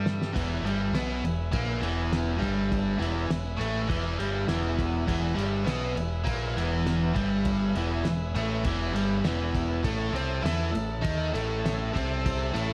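A transistor combo organ fill and a drum fill open this swaggering, raw garage rock excerpt, cut from a longer piece, before the band settles into a straight 4/4 groove at 101 BPM in E major. A biting overdriven guitar, bright, picked and double-tracked, sits up front with a riff ranging from E2 to G4, while a growling picked electric bass, overdriven and heard both direct and amped, holds down the low end from E1 to G2 alongside it. The cloth-damped, thuddy drum kit has a lo-fi, muffled, small-room character, with dark cymbals, a fat snare and a tight kick, all saturated and gritty with a rolled-off top; crash cymbal, kick and snare are heard. In the background, the vintage, buzzy combo organ holds clean sustained chords between A4 and A5 with light vibrato. The harmony rests on E from 0.4 seconds and moves to A5 at 9.9 seconds, and a light reverb gives the whole a modest sense of space.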